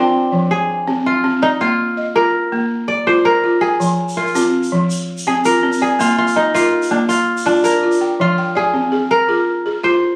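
West African traditional string and xylophone music in a reflective, flowing 12/8 at 109 BPM in F dorian, moving between Fm and Bb, with a fingerpicked kora taking the lead with a ringing, crisp solo up front until 8.2 s, touched by plate reverb. A woody, buzzing balafon played with rubber mallets sits dry and close beside it with arpeggios, while a grainy tube shaker drifts in from a distant, large-sounding space between 3.8 and 8.0 s. Captured on a phone in a small room, with studio reverb and compression, the piece is cut from a longer performance and shifts into a new section at 8.2 s.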